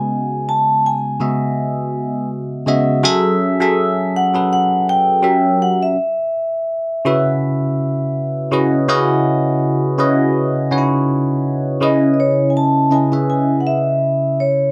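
A ringing, metallic vibraphone, struck with medium hard mallets and played with its motor off, carries the melody up front in a boxy small-room sound. Beneath it, a bright, clean, bell-like tine electric piano colored by phaser holds the accompaniment in this smooth, late-night R&B excerpt with a swung sixteenth-note feel. The harmony moves through C#m11 and F#m9 to an F#7b9 at 5.2 seconds, returns to C#m11 at 6.0 seconds, and settles on C#m7 at 11.8 seconds. Light reverb and a dark production frame the pair.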